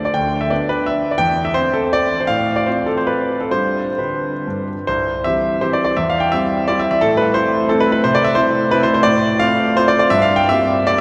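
Bathed in a cavernous cathedral reverb with a long 6.6-second decay, this brief, rustic and graceful fragment of a romantic classical dance in 3/4 and C major features a solo grand piano that sounds clear, intimate and up front, with audible action noise and long sustain, as its dotted rhythms move with a rubato feel between 121 and 189 BPM over harmonies that settle on C at 4.9 seconds and drift through A minor before closing on C7/G.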